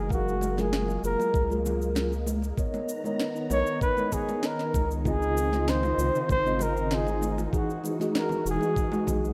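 A rough home-demo mix with light reverb frames this relaxed sunset chillout fragment, where a breathy, close-miked flugelhorn plays an intimate jazz-style solo with vibrato and scooped notes through a delay, up front beside a round, deep analog bass. Silky string-machine chords with ensemble chorus and a mellow tine electric piano through digital delay sit over Gbmaj9, Cbmaj9, Dbmaj9 and Emaj9. Underneath, a gritty, thumpy sampled kick and a sharp electronic snare and shaker, both with studio reverb, join ringing, high-tuned congas in the background.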